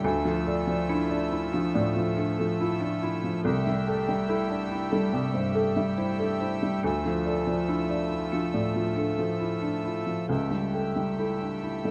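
This neoclassical piano and strings piece sits in D minor at 70 BPM in 4/4, with a rubato feel and a longing, reflective mood. A felt-muted upright piano sits up front, playing a mellow, intimate accompaniment that spans from C2 to A4. Alongside it, a pedal harmonium holds reedy, breathing sustained chords, while a folk marimba played with soft mallets adds woody, rustic arpeggios from the background. All three parts play together through the whole 11.9-second excerpt, cut from a longer piece, as the harmony moves from Dmadd9 to Am7/C, back to Dmadd9, and on to A7/C#. Light reverb gives the recording a gentle sense of space.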